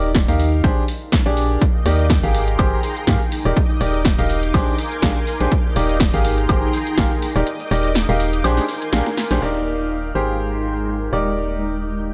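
A light, roomy sheen frames this uplifting, euphoric piano house cut at 123 BPM in Eb major, where a clear, woody upright piano riff with audible action noise and tape echo rides over a hollow, organ-like FM bass with tube saturation, both pumping under sidechain, while a mellow granular cloud pad and a silky, bright analog string pad entering at 1.6 s drift behind, and a punchy, overdriven analog drum machine and electronic kick, re-recorded in a large room, drive the groove until the kick drops out at 7.5 s and a drum fill leads into a band accent at 9.3 s.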